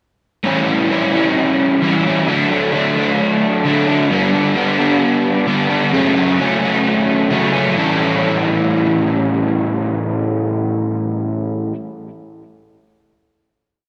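A crunchy, overdriven electric guitar carries this short rock piece on its own, double-tracked and placed up front. It plays picked, strummed chords with whammy-bar dips, moving from A7 through D, G and F#m across the verse. It settles on a final A7 at 7.8 seconds that sounds until about 11.8 seconds. Analog chorus and analog delay on the guitar lend the straight 4/4 feel a dreamy, hazy mood. The whole piece sits in a wet recital hall reverb with digital ambience, giving the playing a spacious sheen.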